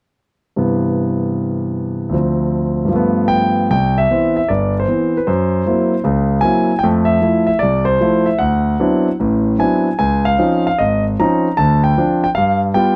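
Swung eighths loosened by rubato carry this relaxed, playful solo jazz fragment, cut from a longer piece, where a warm concert grand piano plays alone from 0.6 to 13.0 seconds, its intimate, up-front tone showing audible action noise, deep bass and long sustain within a dry, close 1970s-style studio sound touched by light reverb.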